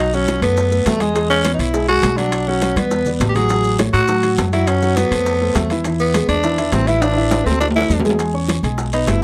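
A brisk, straight 4/4 groove at 205 BPM drives this lively, sunny Afro-Cuban jazz excerpt in E major, with ringing congas, metal-shell timbales, soft-handed low bongos and grainy maracas sitting in the background, a raspy guiro joining them, and drum fills near 2.8 and 7.0 seconds. Up front, a woody, thumpy pizzicato upright bass holds down the low end while a dark grand piano accompanies with mellow, short-sustained chords. The growling tenor saxophone carries the melody with subtone, scooped notes and light vibrato, its gritty edge balanced by a smooth top, before moving into a solo at 8.2 seconds.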